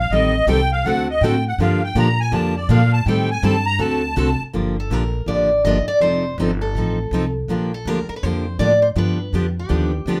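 A moderate studio ambience surrounds this short cut from a longer jazz manouche performance, with every instrument placed up front. At a brisk 163 BPM in a swung 4/4 and G minor, the mood is bittersweet and virtuosic. A reedy, shimmering musette accordion opens with a solo over the first 4.4 seconds, moving through Am7b5, D7 and Gm7 changes. A woody, thumpy upright bass with gut strings plays pizzicato underneath the whole time, while a concert-style picked steel-string guitar supplies the accompaniment. At 4.8 seconds a full-bodied dreadnought guitar takes over the melody as the harmony shifts through F7, Bb69 and G7.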